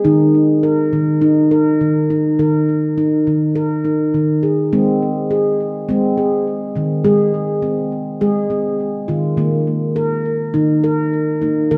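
This meditative world piece is dreamy and calm, moving at 103 BPM in 4/4 with a light swing on the sixteenths, in Ab major pentatonic tuned to A4 = 435 Hz. A solo handpan carries the whole fragment, cut from a longer piece, its ringing stainless-steel tone struck with soft fingertips, sitting up front with a touch of delay and spanning Eb3 to Bb4. An Eb5 chord rings out at 0.1 s and again at 9.4 s, and the music shifts to a new section on an Ab chord at 4.7 s, all wrapped in a wet concert-hall reverb.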